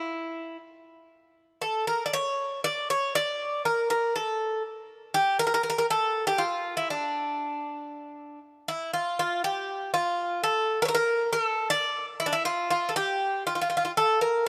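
A moderate plate reverb with a 3.3-second tail hangs around this short cut from a longer piece, giving the lone instrument a glossy, lingering halo. It is Greek folk music in D harmonic minor, set in a straight 7/8 metre that drives along at 238 eighth-note beats per minute, and the mood is intense and tense. A solo Greek bouzouki carries everything, sitting up front with a bright, metallic, picked tone from its doubled strings, some of them strung in octaves for added shimmer. Its line stays within the span from D4 to D5. The opening passage gives way to a new section at 8.7 seconds, which runs until the cut ends at 14.5 seconds.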